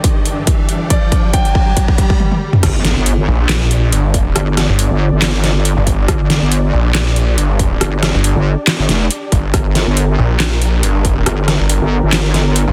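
A snarling, growling saw bass and a detuned wobble bass dominate this aggressive, heavy wobble dubstep excerpt in G minor at 139 BPM with a half-time, lightly swung feel. The wobble bass crashes in at the drop at 2.6 seconds and the saw bass joins at 3.3 seconds, after a build-up of drum fills, a riser, a filter sweep on the supersaw chords, a swell and a brief delayed grand piano melody. Punchy overdriven electronic kicks, a deep snare with metallic hats, handclaps, toms and crashes drive up front over lush, sidechain-pumped supersaw chords in a dense, heavily limited, dry mix.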